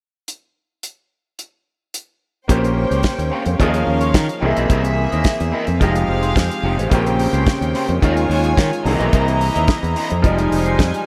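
A light studio reverb surrounds this short disco cut, with a damped 70s drum kit and a growly fingered bass placed up front. The drums open alone, playing hi-hat, tight kick and a medium-tuned snare with a dry, acoustic snap, and at 2.5 seconds the rest of the band joins at a straight 108 BPM in Bb dorian. The bright electric bass carries the low end, while a clear baby grand piano with long sustain and a dark, slightly broken-up electric guitar, treated with wah and subtle chorus and sitting in the background, fill out the accompaniment. Above them, a rich, distant string section, bowed sul tasto with a soft attack and an analog delay, floats as a second line. The harmony cycles twice through Bbm69, Eb9sus4, C7alt and Fm9, giving the groove a danceable, sultry pull.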